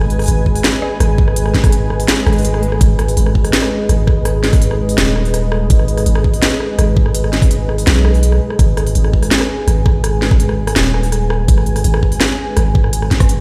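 A long sustained 808-style bass sits up front with a deep, mellow sine tone, its fast attack decaying under a half-time drum and bass groove at 166 BPM in G# minor, holding on a single G#m chord throughout this dark, cinematic excerpt. A layered electronic kit with a cracking snare, crisp hats and rim click runs from the start, and a knocking electronic kick joins it at 0.5 s, while a moody, detuned sawtooth pad with a sub octave and slow attack pumps against the sidechain beneath its chorus. A brief electronic swell appears in the background at 2.3 s, and the whole mix rings out in light digital ambience and stone room reverb, as if played on a big sound system in a bare room.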